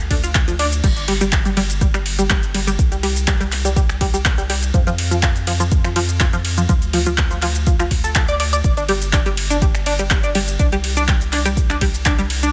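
Progressive house at 123 BPM in a straight 4/4, this 12.5-second cut from a longer piece has an emotional, expansive mood. An up-front, tight sequenced synth drives arpeggios from F3 to D5, its sawtooth, pulse and wave-folded tones given a plucky filter snap and coloured by chorus, phaser, delay and sidechain pumping. Underneath, a round analog bass sits dark and nasal between G1 and F2, its sine-and-triangle body also pumping with the sidechain. A deep, tape-warm electronic kick sits a little louder than the other parts, while the deep house kit places metallic hi-hats, ride, crash, finger snaps, handclaps and shaker up front in a studio reverb. The harmony moves through Dm, open stretches, C5, G5 and a closing Csus2 near 10.6 seconds.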